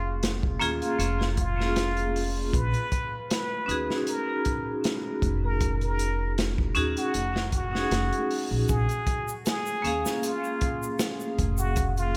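A plunger-muted trumpet, hard-mallet vibraphone and upright bass open this brooding, smoky trip hop excerpt together, with a crunchy breakbeat kit joining at 0.2 seconds under a lightly swung sixteenth-note feel. The trumpet carries the jazz-style solo melody up front, its breathy, close-miked wah-wah tone trailing dub echo. Beneath it, the metallic, ringing vibraphone plays accompaniment through tremolo and tape echo, while the woody, dark pizzicato bass sits prominently in the low end. The drums are saturated and gritty, with a tight kick, a medium-tuned snare, hi-hat and a rolled-off top. Harmony moves from Bbm7 to Gbmaj13 and back to Bbm7 at 8.7 seconds, when a faint tube shaker slips in, and moderate plate reverb with small room ambience leaves the whole mix dreamy and drenched.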